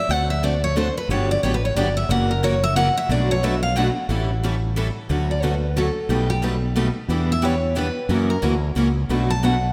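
A swinging three-beat lilt drives this playful jazz manouche excerpt, where a bright, full-bodied dreadnought steel-string guitar picks an up-front solo melody over a boxy parlour guitar's fresh-stringed accompaniment and a punchy, direct fretless electric bass, while a second parlour guitar with audible finger squeak joins in the background at 1.1 seconds, all set in a moderate concert hall reverb.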